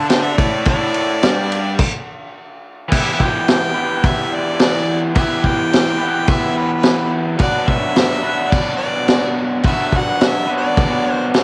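Dry and close, this home cassette recording has the lo-fi sound of tape and little room sound, cut from a longer garage rock piece for a duo or trio. The mood is gritty and swaggering, moving at a straight 107 BPM in 4/4 and centered on E minor. A bright, overdriven harmonica opens with a solo over a G5 chord, its pop-style line colored by light vibrato and scooped notes, and the band hits a stop from 1.8 to 2.9 seconds. From the very start, a raw, double-tracked electric guitar drives a picked, distorted riff up front, with a cassette-tape edge matching the harmonica's, and from 2.9 seconds the harmony moves to Em and later Bm. An up-front acoustic kit adds a punchy kick, a high-tuned snare, and dark crash and ride cymbals, all with a rolled-off top end.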